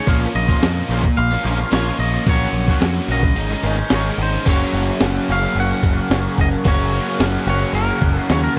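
Cool and bittersweet, this short indie rock fragment is cut from a longer piece and moves at a straight 109 BPM in 4/4. A clean, twangy electric guitar carries the melody from the first moment, its picked lines treated with spring reverb and tape echo. Beneath it, a biting overdriven guitar and a raw garage guitar share the riff, the first with a warm, driven edge and the second brighter, thickened by ensemble chorus and tape echo. A growling picked bass, overdriven and up front, anchors the low end, while a compressed, gritty breakbeat-style kit with a thumpy kick, medium-tuned snare, hi-hat and crash sits forward in the sound. The harmony moves from Bbm through Gbmaj7/Bb and Absus4 before settling on Gb as a new section begins at 4.5 seconds. The whole thing has the dry, close feel of a 1970s-style studio, framed by digital ambience.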